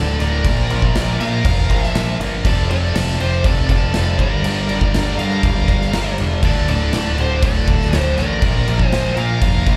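A growling, overdriven electric bass sits up front in this menacing, aggressive hard rock fragment at 120 BPM, beside a punchy big rock kit with bright cymbals that enters at 0.2 seconds, while a dark, smooth overdriven lead guitar carries the melody over a dark, distorted octave-fuzz lead's second line, and a cranked stack guitar with spring reverb, a hollow-toned overdriven semi-hollow guitar with harmonic tremolo and a very quiet double-tracked high-gain guitar churn out the riff through a Bb–F–Gm–Dm progression, all heard as a live gig through a club PA.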